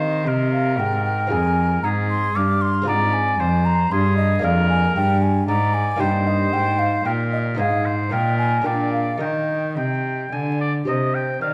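A dance-like, radiant excerpt of a baroque-style sonata movement with continuo, moving in a straight 3/4 at 114 BPM and settling into Eb major from 4.4 seconds. A mellow, airy wooden flute carries the melody with vibrato and tongued notes, ranging from C5 to D6. Beneath it, a clear oboe with light vibrato and a soft attack sings a second line that has a vintage, classical-style character. A delicate, fingerpicked lute on gut double strings, some doubled at the octave, fills in the accompaniment, while an up-front, bowed cello with a nasal, reedy gut-string tone anchors the bass, standing as the most prominent part. All four play throughout the 11.5 seconds, the harmony passing from C minor through F minor and a Bb7 cadence to Eb before returning to C minor at 10.9 seconds, all set in a moderate recital hall reverb with a layer of vinyl crackle.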